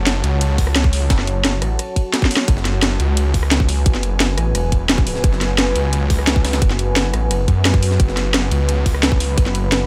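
Dark technical drum and bass at 174 BPM in F# minor, this short cut from a longer piece feels mechanical and aggressive, driven by a straight 4/4 pulse. A thick, detuned sawtooth bass sits up front with a fast attack, sustaining low notes between E1 and F#2, while chorus and sidechain pumping make it breathe against the beat. Behind it, a deep, moody pad holds sustained chords from F#4 to B5, its slow attack, long release, moving notch and built-in reverb adding a shadowy haze. A produced drum and bass kit enters at 0.1 seconds, its cracking snare, hi-hat and rim click cutting through up front, and a tight, layered electronic kick joins at 0.6 seconds. Underneath, a very quiet, gritty breakbeat kit adds a high-tuned snare, hi-hat and ride cymbal, and a drum fill lands between 2.1 and 2.5 seconds, all set in a digital ambience.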